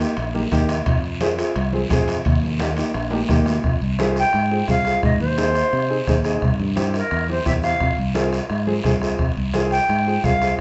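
A breathy, tongued silver concert flute sits up front and enters at 4.2 seconds with an expressive, straight-toned melody over a driving, fiery cumbia in F minor at 173 BPM, cut from a longer piece. Beneath it, a woody upright piano with long sustain plays accompaniment while a direct, up-front fingered electric bass anchors the groove, and a distant soft-beater bombo, raspy guiro and very quiet, ringing hard-hand congas keep the pulse. Metal-shell timbales ring in the background until 3.5 seconds, with a drum fill arriving at 2.9 seconds, and a wet studio reverb gives the band the feel of playing live together in one room.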